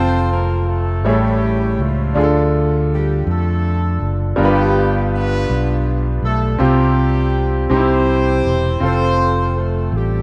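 A slow 6/8 gospel pulse at 54 BPM, counted in dotted quarters with a straight feel, carries this soulful, hopeful excerpt in F major, cut from a longer piece and moving through F, A7, Dm, G7 and a Csus4 resolving to C before returning home at 8.8 seconds. A mellow, tight horn section with octave doubling and a smooth top carries the melody in a pop style, while a brilliant baby grand piano, intimate and up front with audible action noise and long sustain, supplies the accompaniment over a dark, round, amped fingered electric bass. A lush hall reverb surrounds the parts in what sounds like a rough home demo mix.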